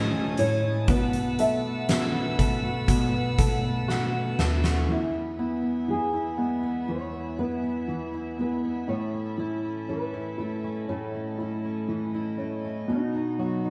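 Heartfelt and tender, this slow pop ballad in E major at 60 BPM is cut from a longer piece, with a dark, thumb-plucked nylon-string guitar carrying the melody over a smooth vintage grand piano, a fingerpicked jumbo steel-string guitar's full-bodied arpeggios and floating, distant sul tasto strings, while a bell-like tine electric piano holds the bass in the background and a huge arena drum kit with a fat snare and boomy kick sits up front until both stop at 4.9 seconds after piano and drum fills, all set in a large room's moderate reverb.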